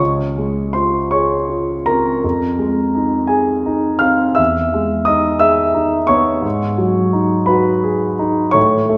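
This impressionist solo piano excerpt in the classical tradition has a serene, hazy mood, moving in a slow 6/8 at 52-60 BPM counted in dotted quarters with a flexible rubato feel. A concert grand piano plays alone throughout the 9 seconds, spanning from Db2 up to F6, its tone natural and rich in deep bass. The harmony drifts through Dbmaj7, Fm7, Emaj7 and Abm7, with the shift to Emaj7 at 4.4 seconds lending a dreamy, unexpected color. The instrument sits up front in the mix, yet it is heard from further back in a recital hall whose lush reverb lingers about 1.8 seconds, softening the edges of each chord. The passage is cut from a longer piece, capturing a brief, suspended moment of stillness.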